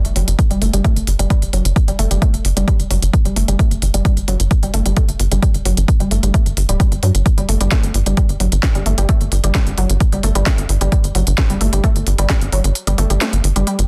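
A layered drum kit with a cracking snare and smooth hi-hats that sound re-recorded in a small room opens this short slice of intense peak-time techno in a straight four. A tight, sawtooth-and-square sequencer bass with ring modulation and a fast filter pluck follows an instant later, and a juicy, squelchy, detuned blip pluck then carries the riff through chorus, tube saturation and tape echo. A punchy, up-front electronic kick lands just after, with the bass pumping against it. The kick drops out at 12.8 seconds, leaving bass, riff and drums in a dense, heavily limited mix with digital ambience.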